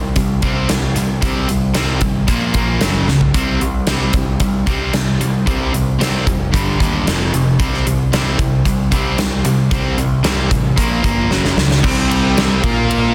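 Menacing and driving, this short hard rock passage, cut from a longer piece, pounds along at 113 BPM in a straight 4/4. Two overdriven guitars carry the riff throughout, a bright, cranked stack tone and a warm, sludgy one sitting in the background, while a growling picked electric bass with its own overdrive anchors the low end. A huge arena drum kit sits up front from 0.2 seconds, with a punchy kick, medium-tuned snare, bright cymbals and toms, and a fill at 3.1 seconds plus another leading into the change at 11.8 seconds. The power-chord riff moves through C5, Bb5, F#5, G5 and F5 before landing on a C minor chord. At that point a tight, double-tracked distorted guitar joins in the background, and a very quiet tonewheel organ adds sustained chords with key click and a fast-spinning rotary speaker. The mix is dense and heavily limited, with light, small-room reverb.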